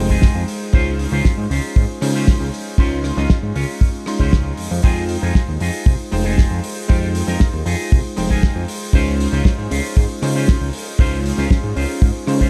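A fat, detuned sawtooth bass and a bright, clangy electric grand piano open this sleek, sensual nu-disco excerpt at 117 BPM in a straight 4/4, moving between Fm7 and Dbmaj7. The bass sits up front with tube saturation and sidechain pumping, its fast attack decaying into a thick low end, while the piano's cutting vintage tone carries chorused unisons and long sustain. At 0.1 seconds a dry, tight kick lands prominently, joined by a damped 70s kit whose hi-hat, rim click and fat snare have a rolled-off top. An electric guitar with an envelope filter plays a dark, clean, picked riff from 0.1 seconds, dressed in subtle chorus and tape echo. The parts hold together through the full 12.5 seconds in a studio ambience, a snippet cut from a longer piece.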